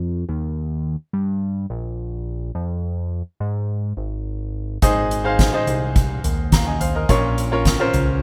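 A thick, sawtooth-edged analog bass with a sweeping filter opens this hopeful, anthemic piano-driven pop excerpt over Eb and Fm before a woody, brilliant upright piano and a soft-mallet acoustic drum kit with a boomy kick and fat snare join at 4.8 s on Ab and Bbm, all up front in a dry, rough home demo mix.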